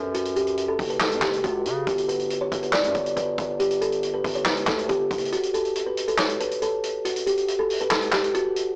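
Half-time 4/4 trap hip hop at 139 BPM sets a dark, melancholic mood, as a woody, hollow-box kalimba melody rings up front through a low-pass filter over F#m and G chords, a heavy, aggressive distorted 808-style bass drops out at 5.3 seconds, and a punchy, rolled-off vintage drum kit of handclaps, hi-hat, snare and kick plays on with its kick muted from 5.3 seconds until the fragment ends at 8.8 seconds, while the recording itself sounds blown-out and overdriven through a small speaker, with moderate studio reverb.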